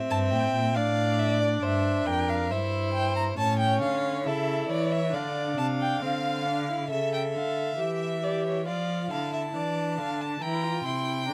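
Closely miked with light reverb and fine detail, this serious, driving baroque-style fugue for string quartet moves at 68 BPM in 4/4 over D minor harmony, with a warm, expressive bowed violin singing the melody from D5 to C6 and a rich, smooth second violin beneath it, while a dark viola with soft attack and portamento fills the accompaniment and an up-front cello anchors the bass from F2 to F3, all four voices sounding from the opening through 11.3 seconds in this short cut from a longer piece.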